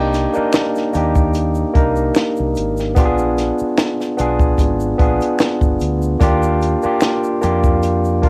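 R&B and neo-soul at 74 BPM with a gentle sixteenth-note swing, this sultry, introspective fragment sets a barky, lightly overdriven tine electric piano up front through a combo amp with plate reverb over a round, saturated fingered dub bass, a compact cocktail kit with a high-tuned snare and punchy kick, and close, dry egg shaker, finger snaps and group handclaps. The harmony moves from Cm7 to Bb7b9 at 3.0 seconds and Ebmaj9 at 6.2 seconds inside a small room with the color of a home cassette recording.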